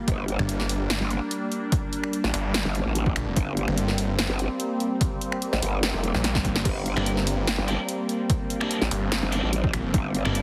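Aggressive and chaotic, this heavy wobble dubstep fragment at 146 BPM in a half-time 4/4 feel sits on G minor, with a growling, formant-filtered wobbling growl bass and a snarling, detuned sawtooth bass (entering at 0.4 s) pushed up front with overdrive, the latter also distorted, a punchy overdriven electronic kick re-recorded in a large room, a big-room dance drum kit of crash cymbal, finger snaps, hi-hat and a punchy snare with a drum fill at 6.2 s, a lush supersaw pad of sustained chords pumping under sidechain and low-pass filtering, and a tight, picked distorted guitar adding tape-echoed stabs from 7.0 s, all squeezed into a heavily compressed, radio-like sound with light digital ambience.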